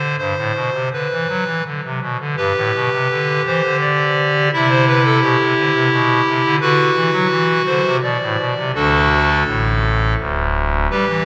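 A cathedral's long, wet reverb, lingering about 5.3 seconds, surrounds a short excerpt from a serene, majestic chorale-style piece in G major, moving in a rubato 3/4 at around 84 BPM. A solo pipe organ sits up front on a hollow clarinet reed stop with a romantic voicing, spanning from a deep D1 up to E5. It carries a progression from G through Cmaj7 and D to a colourful Amadd11 before settling back on D.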